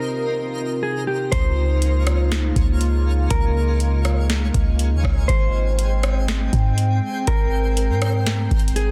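A dense, heavily limited and nearly dry mix opens with a dark detuned analog pad pumping under chorus and phaser, a clean fingered electric guitar melody softened by spring reverb and tape echo, and a twinkling granular shimmer over Cm7, before a booming analog drum machine with deep kick, crisp snare and metallic hats and a boomy 808-style bass enter together at 1.3 seconds to carry this hazy, ethereal half-time cloud-rap excerpt at 121 BPM through Db6 and Abmaj7.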